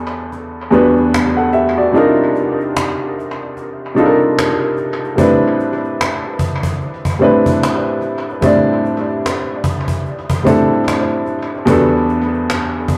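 Lo-fi hip hop with a melancholic, hazy mood and a swung 16th-note feel. A woody, vintage upright piano with short sustain sits up front, carrying extended minor-chord harmony through cassette-tape colour and dub echo, while a snappy, distant cajon with snares and hard hands enters at 0.3 s and echoes as though from a large room. The whole mix is echo-heavy with a moderate spring reverb and a cassette-tape haze, and this excerpt opens with a break lasting until 5.2 s.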